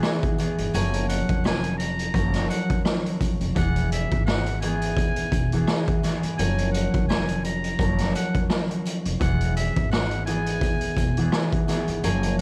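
A muted trumpet carries the melody in a jazz-style solo, its thin, buzzy tone marked by breathy scooped notes, light vibrato and a tape echo, all filtered through cassette grit. This confident, nostalgic boom-bap hip-hop groove moves at 85 BPM in 4/4 with a gentle 16th-note swing, and is cut from a longer piece. Underneath, a concert harp is fingerpicked in ringing tones over a cycle of Eadd9 and F#maj7 chords, also shaped by filtering and cassette coloring. A raw, up-front drum kit with a punchy kick, medium-tuned snare, rim clicks and hi-hat sounds gritty and saturated, with a rolled-off top. A woody pizzicato upright bass with tube saturation enters at 0.6 seconds, while very quiet, jingly sleigh bells sit close in the background. The home cassette recording has little reverb, giving it a dry, intimate feel.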